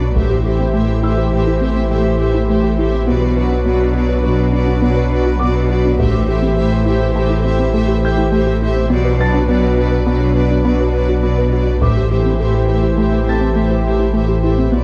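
A dark, warm production with light reverb opens this brooding, vast cue, cut from a longer hybrid orchestral and electronic film score that moves at 103 BPM in a straight 5/4 within A dorian. A smooth, detuned analog pad holds sustained chords under a tight, driving sequenced synth whose chorused, delayed sawtooth-and-square arpeggios sit in the background, while a deep, clean sine sub bass stays up front. A lush, bowed cello section adds a rich, even low line beside it, and a dark viola section with vibrato and portamento supplies close, expressive accompaniment in the background. Above them a studio violin section carries a second line with vibrato, and a polished grand piano adds present texture high in the background through digital delay. Very quiet taiko hits struck with heavy sticks in a small room land briefly at 0.2, 6.0 and 11.8 seconds as the harmony alternates between Am7 and Bm.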